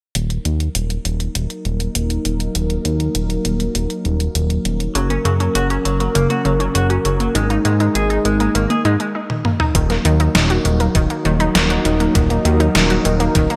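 A fat, thick analog bass with a detuned sawtooth edge and tube saturation sits up front in this nocturnal, cinematic synthwave excerpt, its filter sweeping as it holds sustained low notes. Beside it, a detuned 8-bit drum machine clatters with hi-hat, a medium-tuned snare and toms, overdriven and treated with gated reverb, while a smooth, detuned sawtooth pad sustains chords through chorus with a sidechain pump and its own filter sweep. At 5.0 seconds a lush, punchy unison pluck enters with bright, wave-folded, ring-modulated arpeggios trailed by delay, joined by a clean, picked semi-hollow electric guitar riff that is compressed and lightly chorused and runs until 9.0 seconds. A brief break and drum fill lead into the second section at 9.8 seconds, where a thumpy, overdriven electronic kick drum arrives and the harmony returns to its opening minor chord. The production has a bright 1980s-style digital sheen with light reverb.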